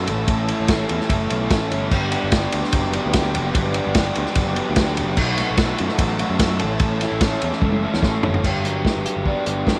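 Indie rock with an upbeat yet wistful mood, cut from a longer piece and built on two overdriven electric guitar riffs: a crunchy one bathed in spring reverb, and a raw garage guitar sitting in the background with lush chorus and slapback echo. A growly picked electric bass and an up-front, lo-fi vintage drum kit with a punchy kick, muffled dark cymbals and a rolled-off top carry the rhythm, while a very quiet, mellow string-machine cello pad holds sustained chords until 8.4 seconds. A drum fill at 7.6 seconds leads into a new section, and the whole mix sits in light studio ambience with lossy compression artefacts.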